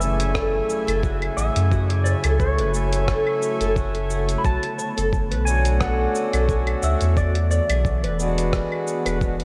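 A bright, twangy slide lap steel melody floats over a reedy, breathing harmonium, a warbling lo-fi pad, a round sub bass and gritty sampler-style cabasa, claves, hi-hat and rim click in this hypnotic, mystical organic downtempo excerpt, joined by a woody oud arpeggio at 0.3 seconds, a thumpy compressed kick at 0.4 seconds and a barely audible electronic impact at 0.7 seconds, as the harmonium, pad and bass pump together and the chords move from F#m9 to Bm9 and E9 in a dreamy, cathedral-scale reverb.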